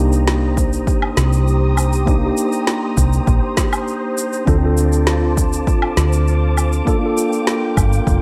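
A growly, round fretless bass sits up front in this smooth sunset chillout excerpt, beneath a mellow tine electric piano with tape echo and a silky, phased string machine carrying slow-attack chords with vintage sampler grit, while an electronic shaker, woody snare and woodblock are joined by a punchy electronic kick at 0.6 seconds, all in light digital ambience over Cm7, Dm7 and Gm7.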